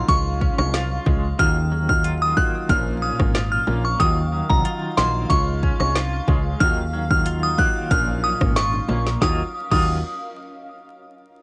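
A straight 4/4 dancehall groove at 92 BPM in Eb minor drives this hypnotic, tough excerpt, with an up-front afro-pop drum kit (deep kick, woody snare, metallic hats, rim click and crash) and soft-handed low-tuned bongos in the background under a dark, punchy fretless bass, while a glassy, warbling FM synth bell carries the melody through chorus, phaser and tape echo over twangy tremolo guitar arpeggios, a worn grand piano with long sustain and a blurred granular pad that pumps until 9.5 seconds, all cycling through Db, Ebmadd9 and Bbm in a dry, crackling home-cassette sound.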